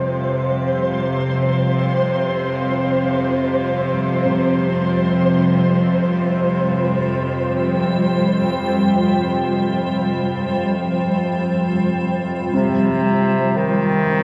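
Unmetered, this unsettling, desolate dark ambient drone fades in on a cloudy, bright granular pad over a tense, string-like bowed drone with vibrato and a flickering, grainy texture, while a dark, mellow baby grand piano plays delayed arpeggios in the background from 4.3 seconds and a clear, vintage bass clarinet carries a solo melody up front from 12.5 seconds, set in a vast, echoing space with huge reverb.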